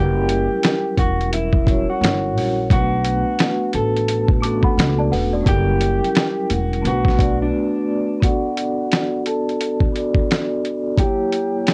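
Up front, a gritty, overdriven sampler-style drum kit drives this hazy, reflective lo-fi hip hop excerpt in B minor at 87 BPM, with its thumpy kick, medium-tuned snare and hi-hat swung on the sixteenths from 0.3 seconds onward. A ringing vibraphone, played with medium mallets and a slow motor vibrato, carries the accompaniment through a cassette-tape filter, while a dark, slightly broken-up electric guitar plays the fingered melody in a muffled, low-passed tone. A woody pizzicato upright bass with tube saturation holds the low end until 7.5 seconds, when a brief break opens before the second section begins at 8.2 seconds. A small, bell-like celesta adds a sweet, delicate second line with tape echo, surfacing mainly around 4.4 seconds. The harmony moves between F#7b9 and Bm7, and the whole mix sits in light reverb under worn, warbling old tape with a drifting pitch.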